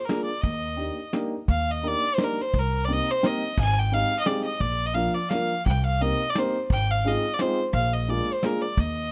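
Nostalgic and whirling, this brief musette waltz in Eb major spins along at 172 BPM in a straight 3/4, cut from a longer piece. A clear, nasal violin carries the melody up front, its airy bow and light vibrato giving the tune an earthy, single-player character. Beneath it, a dark upright piano supplies mellow, woody, intimate accompaniment with audible action noise that lends a vintage feel. An upright bass, entering at 0.4 seconds, adds thumpy pizzicato on gut strings, while a soft brush kit of hi-hat, tight kick and medium-tuned snare keeps time with a small-room warmth and a rolled-off top. The harmony moves from Ebmaj7 through Cm7, Abmaj7 and Ab6 to a closing Bb7, all captured close and detailed in a dry sound.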